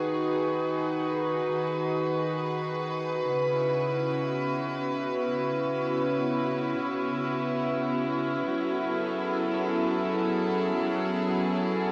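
Bathed in a long, shimmering reverb and the warble of worn cassette tape, this serene ambient fragment, cut from a longer piece, drifts in free time. A soft-attacked, bowed chamber string section sits up front with pure, floating sustained chords moving from G#m7/D# to C#m7 and then F#m9, though its tone still feels distant. From 4.3 s, a calm, detuned organ-like drone with ensemble chorus and its own reverb glides in slowly behind, adding a vintage, warbling haze in the background.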